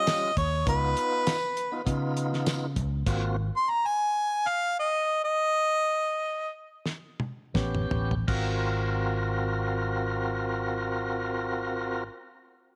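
A clear, overdriven harmonica leads this soulful, swaggering straight-eighth soul blues excerpt in Ab mixolydian at 80-100 BPM with light vibrato and scooped notes until 6.5 seconds, over a full, lightly overdriven tonewheel organ turning through a slow rotary speaker, a round fingered electric bass, and a damped 70s drum kit with a fat snare, tight kick, dark cymbals and tambourine, as the tempo slows from 3.1 seconds and a drum fill arrives at 6.8 seconds, all set in a small room with light reverb.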